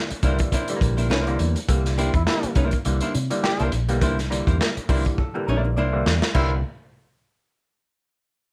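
Gritty and playful, this short funk excerpt rides a swung sixteenth-note groove in 4/4. A crunchy breakbeat kit sits up front with a saturated, rolled-off top, dark cymbals, a tight kick and a medium-tuned snare, while a vintage foam-muted electric bass adds a dark, round low end under a C9 chord. A mellow, stringy clav plays stabs through a phaser and slapback echo, and a clean, hollow-body archtop guitar fills in picked accompaniment. From 2.0 seconds a clear, vintage-toned trombone joins with a jazz-style second line. Near the close the clav takes a fill from 4.6 seconds and the drums add their own fill from 5.2 seconds, all within a light reverb.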